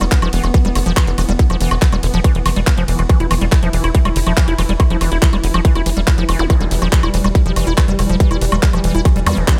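A tight, up-front electronic kick drum drives this short psychedelic trance cut, running at 141 BPM in straight 4/4 in E phrygian, with a driving, psychedelic mood. Beneath it sits a punchy sequencer bass built from sawtooth and square waves, with a filter pluck, a moving notch and fast, decaying notes that keep the low end pushing forward. A squelchy, resonant acid bass carries the riff, its square-wave tone smoothed by chorus, shaped by a filter sweep and trailed by tape echo and sidechain pumping. A pulsing, tempo-synced texture of detuned unison triangle tones holds sustained chords with a slow attack, colored by chorus, built-in reverb and sidechain pumping. A layered garage drum kit adds handclaps, warm hi-hats, ride cymbal and woodblock with studio reverb, while a very quiet electronic zap flickers in at 6.4 and 9.3 seconds. The overall sound is fairly dry, with little reverb on the mix as a whole.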